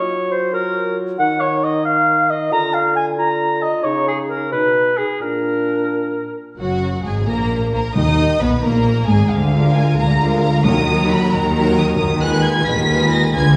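Classical in 6/8 at 89 BPM, urgent and restless, this excerpt opens with a woodwind quartet of up-front oboe, hollow background flute, clarinet and mellow bassoon until 6.4 seconds, then at 6.6 seconds hands over to bowed strings, a lush violin section carrying a high melody over a rich second violin line, close violas, and expressive cellos and double basses, punctuated by very quiet, dry timpani strokes at 8.0 and 10.6 seconds, all set back in a reverberant recital hall.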